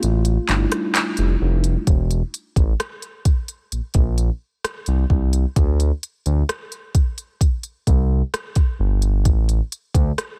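The sound is dry and close, with the drums and bass set up front in a brief excerpt cut from a longer contemporary R&B piece. At a slow 65 BPM in straight 4/4, the mood is sensual and moody. A mellow, clean tine electric piano, heard as if through its built-in speakers, plays accompaniment during the opening break over an A7sus4 chord, then falls silent at 1.9 seconds. A smooth synth bass and a smooth, electronic R&B drum kit play from the very start and carry the groove onward after the piano drops out. The bass blends sawtooth, square and triangle tones with ring modulation, giving a fast-attack, sustained, rounded low end. The produced kit offers a soft kick, silky hi-hat, handclaps and rim clicks with a tape-like glow, while the harmony moves from C7/E to Gsus4 before the chords drop away near the close.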